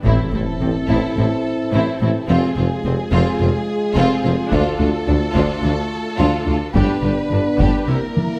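Taiko drums struck with heavy sticks drive this epic, dramatic orchestral film cue, opened by a huge, bright impact and capped by a reverse cymbal and drum fill at 8.2 seconds, while a hard-mallet timpani hit sounds only at the start. Dark, distant French horns hold sustained chords over a deep bass of rich cellos, woody double basses and a clear, vintage-toned tuba. Lush bowed violins carry a focused, vibrato-laden melody above a smooth second violin line and a soft-attacked viola accompaniment with portamento, all set in a moderate scoring-stage reverb through an A-minor progression.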